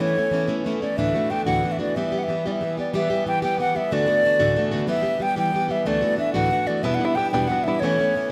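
Close, detailed microphones capture this short cut from a wild, driving Celtic folk tune in 6/8 at 123 BPM in E dorian, set in a moderate recital hall reverb. Up front, an airy wooden flute carries the melody with tongued notes and vibrato, while a picked plugged-in steel-string acoustic guitar gives warm accompaniment, complete with finger squeak, over chords moving between Em, D and Dadd9. A reedy, shimmering musette accordion holds a drone in the background, and a mellow, plunky open-back banjo slips in with a fingerpicked, twangy second line at 6.9 seconds.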